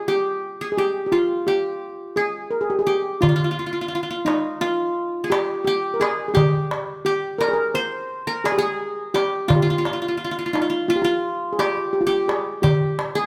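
Close, detailed microphones and a light reverb give this short extract from a longer piece an intimate, clear sound. It is a hypnotic, soulful Turkish makam ensemble piece in 9/8 at 172 eighth-note beats per minute, with a straight feel and tuning set to A4 = 438 Hz. A steel pan carries the melody between Eb4 and C5. Played with soft rubber sticks, it sounds metallic and shimmering yet mellow, with a boxy small-room character, and sits up front. A fingerpicked qanun traces a second line in the same register, its triple strings sounding warm with a bright edge, slightly beneath the lead. From 3.2 seconds a small metal-shelled darbuka joins with a crisp, high, live-room tone, driving the 9/8 meter until 13.2 seconds, just before the close at 13.3 seconds.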